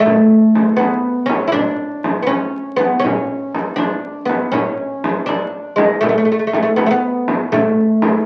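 This Persian modal ensemble fragment in A dastgah mahur moves at 80 BPM in a straight 6/8, with a warm, festive mood. The fretless oud carries the melody between G#3 and E4, its plectrum-plucked double strings sounding woody and acoustic, placed up front. A small, bright frame drum joins at 0.1 seconds and plays until 8.1 seconds. It sits up front yet has a distant, large-room character. The whole piece is bathed in a wet studio reverb and has the worn sound of a very old 78 rpm record, with vinyl crackle throughout. It is cut from a longer piece, and this short passage ends at 8.3 seconds.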